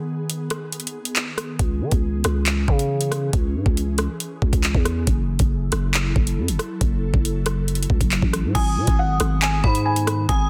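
Cold and dark, this half-time drill piece at 138 BPM in G# phrygian opens on an ethereal, airy pad soaked in ensemble chorus, reverb and phaser, over an up-front electronic kit of knocking kick, metallic hats, handclaps, rim clicks and crash; a growling, buzzy 808 bass enters at 1.6 s as the chords move from G#m through C#m and F#m7; a mellow grand piano with digital delay and a ringing, inharmonic FM bell join at 8.5 s as the harmony returns to G#m, all under a dense, heavily limited modern master.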